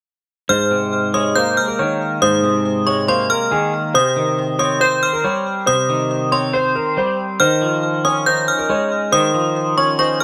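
Hip hop at 139 BPM in a half-time feel, this tense, dark clip cut from a longer piece runs from 0.5 to 10.2 seconds: a concert grand piano carries an intimate melody with audible action noise and long sustain through a low-pass filter and delay, a metallic, inharmonic FM bell rings out a second line above it with chorus and delay, and a clean, compressed, twangy electric guitar sits up front in lush chorus and low-pass filtering as accompaniment over Abadd9, Cm and Dbadd9 chords, all in a rough home demo mix with light reverb.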